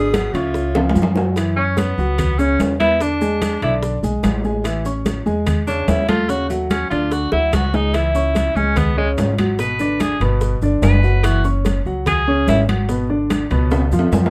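This is a fiery, sophisticated Afro-Cuban jazz excerpt in F# minor, moving at a straight 146 BPM in 4/4. A forceful alto saxophone with a smooth top and vibrato opens with a brief melodic phrase that ends by 1.0 seconds. Beneath it, a bright, vintage-toned tenor saxophone plays a second line from the start, then takes an up-front jazz solo from 1.4 seconds, punchy and full of vibrato, until it drops out at 12.6 seconds. An intimate grand piano sits close in the mix with audible action noise, comping through chords such as Amaj7, Dmaj7, G#dim and a closing C#7, while a woody pizzicato upright bass on steel strings stays up front in the low register. The percussion bed blends high-tuned congas struck with hard hands, tight, dry bongos played with soft hands, ringing metal-shell timbales heard in a live room, and grainy, mellow maracas in the background. Short drum fills mark the phrase turns, and a light reverb gives the ensemble a sense of space.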